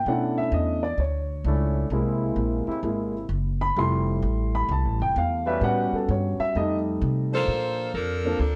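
This short, energetic big band swing excerpt, cut from a longer piece, has a lively swung feel in 4/4. An intimate upright piano opens with a solo over a pizzicato upright bass with steel strings and a woody tone. The piano sits up front, with boxy character, long sustain and audible action noise. From 1.5 seconds, a mellow, tight trombone section holds soft-attack chords with light vibrato beneath it, moving through harmonies such as Bm11, Caug7, Fmaj9 and A13. Near the end, at 7.3 seconds, a clear saxophone section takes the melody up front, smooth on top and ensemble in style, as the harmony settles on Bbmaj7. Light reverb surrounds the whole.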